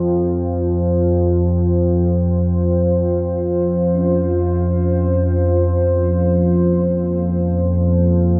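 An up-front analog drone anchors this cavernous, unsettling dark ambient passage, its detuned sawtooth and pulse-wave tones warbling with chorus and a vintage, evolving character as it holds low between F2 and F3. Above it, a deep, moody pad sustains chords in unison with a sine sub octave, slow attacks and long releases, its own built-in reverb and chorus lending it a shadowy depth. Very quietly in the background, a quartz singing bowl struck with a wooden striker adds a pure, meditative ring with slow beating. The music drifts in free time, tuned to A4 = 441 Hz, moving from an F5 chord to Bbm/F at 3.9 seconds. A moderate spring reverb with a 2.4-second decay gives the whole room a hollow, echoing space across this brief 8.4-second cut from a longer piece.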